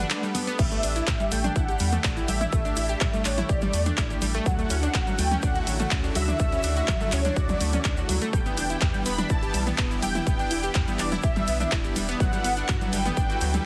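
Progressive house with a euphoric, hopeful lift, this short cut from a longer piece rides a straight pulse through a chord cycle that moves from Gmaj7 to A7sus4, Dmaj7 and Em7. A thick, bold unison lead carries the melody with a mellow, detuned, wave-folded tone shaped by vibrato and ring modulation, its ensemble chorus and tape echo pumping against the sidechain alongside a sawtooth analog pluck whose bright, decaying arpeggios also trail tape echo. Beneath them a lush, airy supersaw pad holds sustained chords in the background, while a round, deep analog bass with a filter sweep anchors the low end. A very quiet electronic swell opens the track as a big-room kit of crash, handclaps and hi-hat and a grainy egg shaker slip in, with overdriven electronic congas and toms tucked behind, before the punchy, layered kick lands up front at 0.6 seconds. Light reverb surrounds a heavily compressed, radio-like master.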